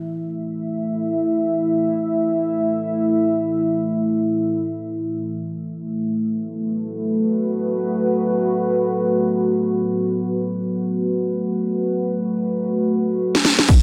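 Soaked in lush hall reverb and densely limited, this bouncy, swaggering bass house fragment in free time opens with a deep, moody sawtooth pad carrying sustained A5 chords with chorus and sidechain pumping, until a cracking, overdriven snare, shaker and crash fill arrives at 13.3 seconds and a punchy overdriven kick, a hollow knocking FM bass and a very quiet, gritty hi-hat drop in at 13.7 seconds.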